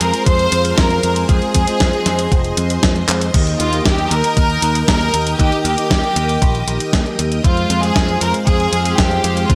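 A clear, floating violin section opens this playful, romantic italo disco excerpt up front with a pure, sul tasto melody touched by digital delay, while a lush string machine holds vintage, sub-octave chords with ensemble chorus in the background and bold, detuned analog synth brass adds stabs with a filter sweep and chorus. A picked electric bass sits underneath, direct and amped, and a clean 12-bit drum machine brings crash cymbal, handclaps, hi-hat and a fat, up-front snare wrapped in gated reverb. A thumpy electronic kick joins at 0.3 seconds to drive the straight 4/4 groove at 117 BPM. A drum fill arrives at 3.1 seconds, just before the harmony moves from F minor to E-flat and then returns to F minor at 7.4 seconds. The mix carries a light reverb.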